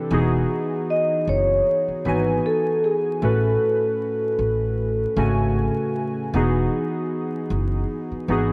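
Lo-fi hip hop with a mellow, cosy mood and a gentle swing, cut from a longer piece and dusted with vinyl crackle in a moderate studio room. Warbling, detuned synth keys with a nostalgic, vintage tone, treated with chorus, a low-pass filter and plate reverb, sit up front on Emaj9 and A6 chords, while a woody, pizzicato upright bass holds the low end from 0.1 s. A ringing vibraphone played with soft mallets, with slow motor vibrato, tape echo, a low-pass filter and plate reverb, carries the melody from 0.9 s to 5.9 s.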